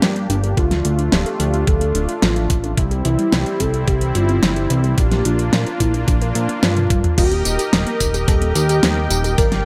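Cinematic and nostalgic, this synthwave excerpt moves at 109 BPM in a straight 4/4, with a velvety synth lead carrying the melody over sidechain-pumped supersaw chords, a warbling, lo-fi pluck arpeggiating in the background, and a fat, saturated analog bass up front. An overdriven pop drum kit with a fat snare and metallic hats is joined by a thumpy, tape-warm electronic kick at 0.6 s, and a drum fill at 6.8 s leads into a new section at 7.2 s, where a very quiet, dreamy FM electric piano with a soft pad layer adds a second line. The chords move from Gm through Dm, C and Bb to Eb, all set in a bright 1980s-style digital production with a moderate plate reverb.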